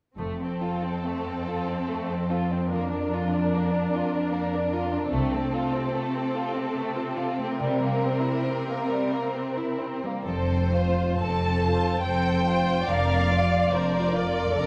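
Classical, a slow romantic movement for symphony orchestra in F major and 3/4, moves with a serene, lyrical rubato at around 62-76 BPM, cut from a longer piece. Lush, expressive violins carry the melody from a distance over a focused second violin line, smooth viola accompaniment and ringing harp arpeggios in the background, while a rich cello section holds the bass with a dark double bass section that enters at 0.2, 5.1 and 10.3 seconds. All the strings are bowed with vibrato, and a moderate scoring-stage reverb surrounds the ensemble as the music moves from its opening section into a new one at 10.2 seconds.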